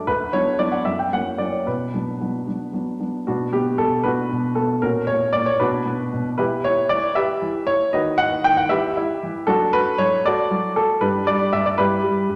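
Set in 6/8 at 77 beats per minute, counted in dotted quarters with a straight feel, this short excerpt from a classical-period piano sonatina moves at an easy, graceful pace with a playful air. A single baby grand piano carries everything on its own, spanning D2 to G5 in B minor, its tone dark, mellow and slightly worn. The instrument sits up front and intimate, with audible action noise and a short, natural sustain, while a wet recital hall reverb of about 1.4 seconds surrounds it. A brief opening phrase gives way at 3.3 seconds to a longer second passage that runs to 12.4 seconds. The harmony circles around B minor and F-sharp before turning toward E minor, passing through B over D-sharp and D over F-sharp, and settling on E minor over G at 11.8 seconds.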